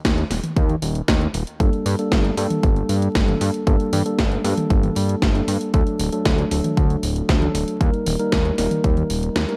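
A fat, detuned sawtooth bass, a punchy electronic kick and a house kit with a cracking, gated-reverb snare, hi-hat and toms open this melodramatic, danceable italo disco excerpt over a bed of vinyl crackle, before a mellow tine electric piano enters at 1.6 s with clean stabs trailed by tape echo over Gmadd9, D and Eb chords.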